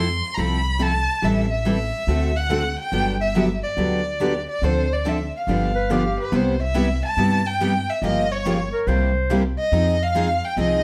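A bowed violin with smooth vibrato carries the melody over two picked steel-string acoustic guitars and a woody, thumpy pizzicato upright bass in this lively, charming jazz manouche swing at 141 BPM, moving from G major to C major at 6.3 s, while a breathy clarinet with scooped notes adds a second line from 5.8 to 9.4 s, all in a moderate studio reverb on this short cut from a longer piece.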